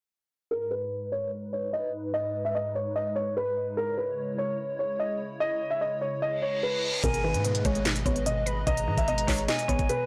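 Half-time trap rhythm drives this melancholic, eerie hip hop excerpt, where a dark, mellow grand piano melody sits up front over a hollow, detuned pad through a filter sweep, a reverse cymbal and downlifter lead in from 6.4 s, and at 7.0 s a knocking trap kit with sharp snare, crisp hats and handclaps arrives alongside a deep, sine-like 808 bass, a woody FM synth pluck and an airy flute line with vibrato and delay, set inside a blown-out, overdriven digital ambience.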